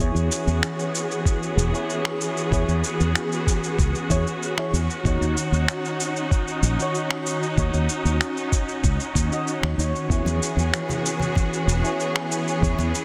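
A dense, heavily limited mix with light reverb and digital ambience opens this sunny, blissful sunset chillout excerpt, cut from a longer piece and moving in an easy, straight 4/4. Up front, a symphonic string section holds sustained, bowed chords with expressive vibrato and a soft attack. Beside it sits a dark, round fretless electric bass. Soft electric-piano-like synth keys add gentle, decaying accompaniment coloured by chorus, phaser and tape echo. The harmony moves from E6 to D#m7 and back. Gritty, overdriven electronic cabasa and finger snaps run throughout, joined at 1.3 seconds by a thumpy, compressed electronic kick, and thick-skinned congas slip in quietly behind everything else at 10.3 seconds.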